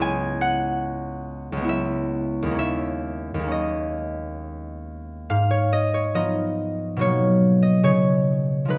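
Classical solo concert harp in a mysterious, gentle mood, its warm, fingerpicked, ringing tone sitting up front in a lush recital hall reverb as it drifts in a rubato three-beat lilt through rich chords from C#m7 to a closing C#9, shifting into a new section at 5.3 seconds in this short excerpt cut from a longer piece.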